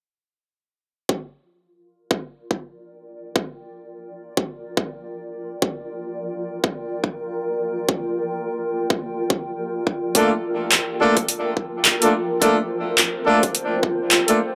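Glitch hop at 106 BPM in 4/4 with a swung sixteenth feel, this funky, playful excerpt sits in G minor over a Gm7 chord. An overdriven, punchy electronic kick enters at 1.1 seconds, up front and re-recorded in a small room. From 2.5 seconds a cloudy, blurred granular pad fades in, with a slow attack, long release and built-in reverb, its mellow, evolving texture pumping against the sidechain. At 10.1 seconds a dubstep kit adds handclaps and metallic hi-hats with overdrive, while a clear horn section plays pop-style stabs in octaves with light vibrato, coloured by 12-bit sampler grit, analog delay and sidechain pumping. The echo-heavy mix sits in a wet spring reverb and digital ambience.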